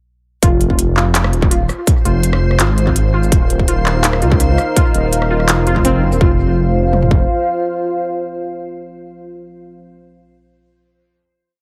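A rumbling, detuned saw bass with long gliding notes anchors this spacious, cinematic half-time drum and bass piece in F minor at 166 BPM, entering at 0.4 s alongside a distorted industrial kick-and-tom kit up front, a sparse beat of crisp hats, claps, rim clicks and shaker through analog delay, and a warbling, lo-fi pluck cycling a 6-step arpeggio loop that drifts against the bar with lush chorus, 12-bit grit and delay, while a reversed granular texture holds a bright high note in the background and a moody analog pad with a sub octave and sidechain pumping enters at 3.5 s to carry the closing F5 chord through the echo-heavy mix.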